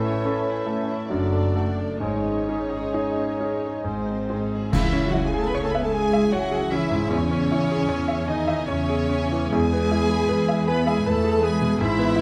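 Classical romantic music for piano and orchestra, passionate and brooding, moves in a rubato 3/4 at roughly 63-82 BPM in C# minor, excerpted from a longer piece, with a clear, present baby grand piano up front carrying the melody alongside a lush, vibrato-rich violin section, while a second violin section adds an expressive second line and violas, cellos and a dark bowed double bass section fill out the accompaniment and bass. In the opening seconds, an airy flute, a mellow cor anglais, a dark, distant clarinet, a bassoon and a very quiet, roomy French horn section add second lines and sustained chords before falling away around 4.4 s, as a cymbal swell with dark clash cymbals and concert bass drum builds from 2.0 s into a full-band accent at 4.7 s, where round, soft-mallet timpani sound briefly. The close, detailed recording carries light reverb, and the piano, strings and double bass continue together to the end at 12.2 s.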